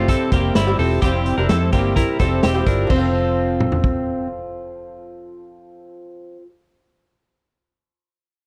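Jangly indie pop at 128 BPM in F major, this bright, nostalgic excerpt moves from a Bbsus2 chord to F at 2.9 seconds. A shimmering, octave-doubled fingerpicked twelve-string acoustic guitar with audible finger squeak sits up front beside twangy, compressed arpeggios on a clean twelve-string electric guitar, over a round, foam-muted vintage fingered bass and a gritty, saturated garage drum kit with a punchy kick and rolled-off top. The drums drop out at 3.9 seconds and the electric guitar at 4.3 seconds, while the acoustic guitar carries on to 6.5 seconds in a dry, close 1970s-style small-room sound.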